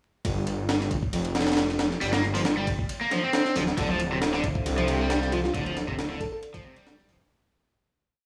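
Breakbeat with an energetic, raw edge, this short, complete piece rides a straight groove from the first moments. A sampler-style drum kit sits up front with a thumpy kick, high-tuned snare, hi-hat and ride cymbal, its looped break gritty, compressed and chopped with edits, while a thick, menacing detuned saw bass holds long gliding notes beneath it. At 2.0 seconds a cranked stack guitar joins with a bright, overdriven picked riff built on a repeating 16-step sequence, colored by tube saturation, spring reverb and tape echo. A dark, moody analog pad slips in behind at 3.8 seconds with sustained chords treated with chorus and sidechain pumping, as the harmony moves from G7 to Dm9. Briefly a bell-like FM electric piano adds sparkling short phrases through a small speaker sound and tape echo, all set in a dry, gritty recording with vinyl crackle and small room ambience as the track fades out from 5.0 seconds.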